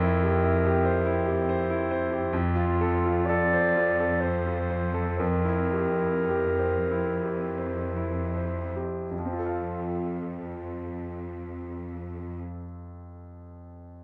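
Lyrical and passionate, this fragment of a romantic classical movement for piano and orchestra unfolds in F major and 3/4 with a free, rubato feel, its tempo ranging between 37 and 73 BPM and slowing from 1.1 to 9.1 seconds. A brilliant concert grand piano carries the melody up front with deep bass and long sustain, while a dark, distant clarinet adds a second line and a lush, bowed cello section with vibrato holds the bass in the background, beginning over a C7/F chord. Clarinet and cellos stop at 12.4 seconds, leaving the piano to carry on alone, all heard through close, detailed microphones with light reverb.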